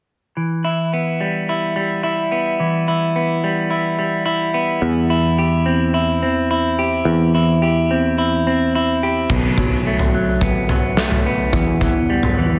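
A clean, hollow-toned semi-hollow electric guitar sits up front from the start, picking arpeggios through tape echo over Em and C/E in a brooding post-rock excerpt in E minor at 107 BPM, with a picked electric bass entering at 4.8 seconds to add a growly, direct low end. At 9.3 seconds a big rock drum kit arrives with crash cymbal, punchy kick, medium-tuned snare and toms, its dark, rolled-off sound filling a big room as the harmony moves to B5 and back to Em, giving a cathartic lift. Light reverb and small-room ambience frame the whole piece, which is cut from a longer work.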